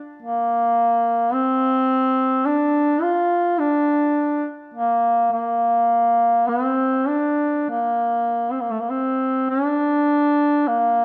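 Mournful and solemn, this brief Caucasian lament is cut from a longer piece and unfolds in a free, rubato 4/4 at roughly 48-55 BPM. A lone duduk carries everything as the solo voice, entering at 0.2 s and sounding until 11.0 s, moving within a span from A3 to F4. Its tone is warm and folk-styled, with scooped notes. It sits up front in the mix yet carries a distant, roomy quality, and a slapback echo trails its phrases. A moderate concert hall reverb with a 2.3-second decay surrounds the instrument, while close, detailed microphones capture its sound. Near the end, the line shifts into a new passage just before the fragment breaks off.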